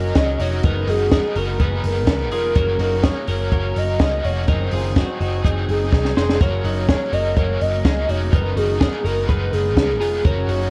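Nostalgic and breezy, this excerpt of jangly indie pop moves at 125 BPM in a straight 4/4, with a hollow, woody clarinet-like synth lead carrying the melody through a soft chorus and vibrato over chords that shift between F# and G# shapes above an F# bass. Beneath it, a bright, compressed twelve-string electric guitar spins arpeggios through spring reverb, while a cranked stack guitar adds overdriven, picked accompaniment with harmonic tremolo. A round, foam-muted picked bass and a compact cocktail drum kit with a high-tuned snare and punchy kick sit up front, the drums playing a fill at 5.9 seconds, and the whole recording carries the worn, warbling pitch drift of old cassette tape under light reverb.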